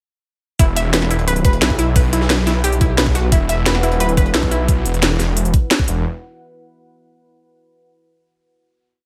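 Tense and aggressive, this short piece of dark technical drum and bass runs at 176 BPM in a straight 4/4 and launches straight into a drop at 0.6 s, centred on an Esus2 chord. A thick, detuned saw bass with chorus and tube saturation sits up front, playing chopped phrases between E1 and B1 until 6.0 s. A knocking electronic kick and a layered drum and bass kit with a cracking snare and crisp, tape-warm hats drive tight technical drums in studio reverb, while a very quiet, gritty jungle sampler-style kit adds a pitched-up looped breakbeat with edits and a high-tuned snare, recorded in a large room. Above them, a punchy unison pluck with a noise layer and ring modulation repeats a 16-step arpeggio sequence between E4 and E5, with sidechain pumping and a trailing diffuse ambient delay. Briefly, from 3.6 s, a deep, moody pad with wave-folding and a sub octave adds sustained chords, also pumping and washed in its own reverb, all set in a light digital ambience.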